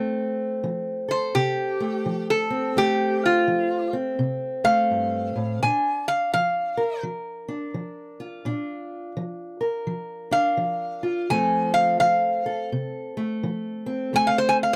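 A dark, woody parlour steel-string guitar, fingerpicked on old strings, opens this laid-back, swaggering acoustic country blues in F major at 84 BPM with a swung 4/4 feel. A bright, nasal lap resonator guitar, played with fingerpicks and a steel bar, enters up front at 1.1 seconds to carry a metallic slide solo over the F to Bb to F changes, all captured by close, detailed microphones in a booth with moderate ambience.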